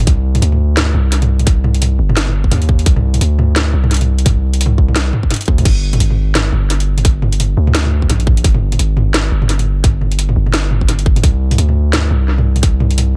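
A half-time drum and bass groove with a loose swing on the sixteenths drives this dark, spacious cut from a longer track. Up front, a tight electronic kick runs from 0.1 s to 12.7 s beside a layered, produced drum kit of cracking snare, metallic hi-hats, crash cymbal and toms, the kit fed through an analog delay in an echo-heavy mix with little reverb. Underneath, a long, sustained 808-style bass gives a deep, mellow sine tone with a fast attack and a decaying tail, roughened by tube saturation.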